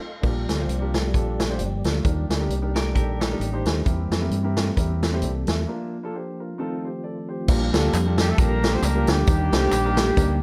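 Soulful and reverent, this swinging uptempo gospel excerpt opens on a band accent from a dark, octave-doubled horn section that returns with the melody at 8.2 seconds, set over a mellow, flute-like tonewheel organ with fast rotary speaker and chorus vibrato, a woody upright piano, a round fingered electric bass and a roomy big-band drum kit with a boomy kick, while a twangy clean electric guitar adds a brief second line early on, the band breaks at 5.7 seconds, and tambourine and handclaps join in the background at 7.5 seconds.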